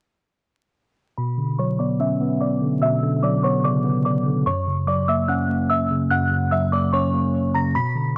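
A delicate, tinkling FM synth tine bell carries the melody up front through chorus, phaser and analog delay over a mellow, clean tine electric piano with lush chorus in this melancholic, dark half-time hip hop fragment at 146 BPM in B harmonic minor, moving from Bmadd9 to F# at 4.5 seconds under a filter sweep, with light reverb, transformer saturation and vinyl crackle lending a gritty hardware sound.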